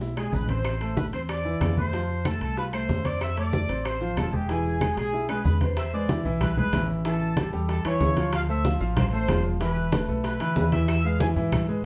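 A drum fill opens this fiery, passionate salsa excerpt at 188 BPM, where a clear, up-front grand piano with audible action noise and a thumpy, dark gut-string upright bass support a punchy, tight trumpet section carrying the melody with light vibrato, while bright hard-handed congas, round soft-handed bongos, ringing metal-shell timbales, and woody claves that drop out at 5.5 seconds and return at 10.9 seconds sit in the background, joined by grainy, distant maracas, in a band playing live in one room with wet studio reverb.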